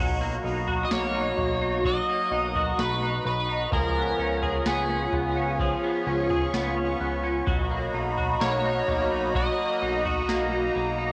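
A swirling, detuned analog pad, twangy clean electric guitar arpeggios with ensemble chorus and tape echo, and a fat, nasal saturated bass open this blissful, ethereal dream pop excerpt at 64 BPM in B lydian over Bmaj7 and C#7. A soft vintage rhythm box with deep kick, crisp snare and overdriven toms enters at 0.7 seconds, and an up-front overdriven slide guitar carries the melody from 0.8 seconds, all steeped in the character of a cassette home recording with moderate studio reverb.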